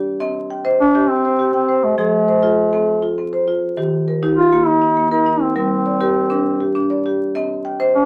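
Warm and rippling, this short fragment of a longer piece draws on southern African traditional music, built around an interlocking mbira-style cycle in a straight 12/8 feel. A marimba played with medium mallets opens at 0.0 s, spinning arpeggios across a broad range and sitting up front in the mix. At 0.8 s a mellow duduk enters with a folk-style solo melody, its scooped notes hovering in a low, narrow register close to the listener. The harmony moves from Cm through F, Eb and Gm before returning to Cm at 7.3 s, on an equiheptatonic tuning that gives the pitches a subtly unfamiliar cast. A moderate studio reverb surrounds the two parts, and a layer of vinyl crackle lends the recording an aged, dusty patina.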